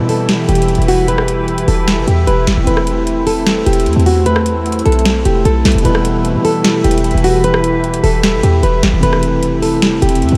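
Menacing and dark, this half-time trap cut is carried by a full-bodied, thumb-plucked nylon-string guitar melody trailed by diffuse ambient delay, over a mellow vintage grand piano with analog chorus and a glassy, ethereal FM pad holding slow-blooming chords that shift between Em and Am/E. A punchy, tight 808-style bass with a sine tone and noise layer sits up front, while a booming analog drum machine, re-recorded in a small room, supplies a crisp snare, rim clicks and metallic hi-hats. The whole dreamy mix is soaked in a huge ambient reverb, giving this excerpt from a longer piece a haunting, cavernous depth.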